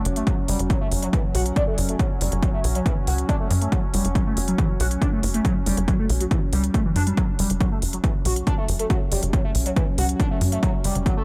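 Intense and hypnotic, this driving peak-time techno excerpt runs on a straight 4/4 pulse, with a punchy, tape-warmed kick up front and smooth electronic hi-hats pumping against it. A tight sequencer bass built from wave-folded sawtooth and square tones plucks and saturates beneath a screaming, guitar-like synth lead whose distorted riff is coloured by phaser, lush chorus, delay and gritty 12-bit sampler texture. Underneath, a deep, moody ambient pad drones with warbling chorus and its own reverb, while the overall sound stays dry and close.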